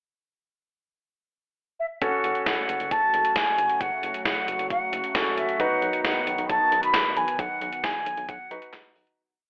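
An airy, mellow flute carries the hook phrases of this nostalgic and upbeat synth-pop piece at 134 BPM, entering at 1.8 seconds over a brief pickup before the full band arrives at 2.0 seconds for a pre-chorus that moves from F#m to B. Clear grand piano holds triad chords, a swirling, nasal analog pad sustains beneath it with phaser and chorus, and a rubbery, bouncy square-wave bass sits dark in the background. Up front, a gated 80s drum machine drives a straight beat of thumpy kick, overdriven gated-reverb snare, handclaps and hi-hat, all colored by a plate reverb and a telephone-like filter before the fade-out that begins at 7.4 seconds.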